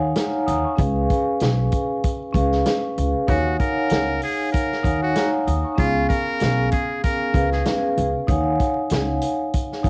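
Soft-mallet vibraphone, mellow and ringing with a slow motor vibrato, opens this gritty, dark boom-bap hip-hop excerpt alongside woody pizzicato upright bass; a vintage drum kit with a punchy kick, medium-tuned snare and hi-hat enters at 0.2 seconds in a swung sixteenth-note feel; and from 3.3 to 7.6 seconds a buzzy, breathy metal-muted trumpet takes a jazz-style solo with light vibrato, while the vibraphone, drums and trumpet carry a cassette-tape colour within a home-recorded sound of light reverb and vinyl crackle.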